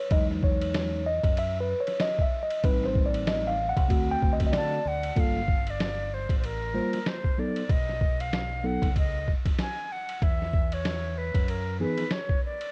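A mellow tine electric piano with a cassette-tape sheen solos over Emaj9, Am7b5 and D7 until 5.2 seconds, backed by a deep, round, punchy dub fingered bass and a muffled, compressed, pitched-down sampler-style drum kit with a thumpy kick, in this cool, mellow jazz-hop cut from a longer piece at 95 BPM with a 16th-note swing, until a breathy, soft-attack concert flute with analog delay takes the melody from 4.6 seconds as the harmony moves through Gm9, B and E5 in a lightly reverberant, homespun cassette sound.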